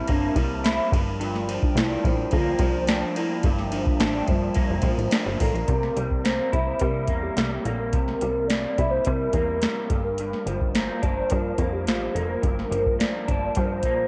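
A woody, clarinet-like synth lead carries the melody through phaser, lush chorus and slapback echo over a slightly broken-up electric guitar from a small old amp with ensemble chorus and warbly pitch drift, a plucky, punchy analog bass, and an overdriven vintage rhythm box of deep kick, crisp snare, metallic hats and ride, while a dark, flute-like pad holds chords until 5.7 s in this mellow, wistful indie and bedroom pop fragment steeped in the sound of worn old cassette tape.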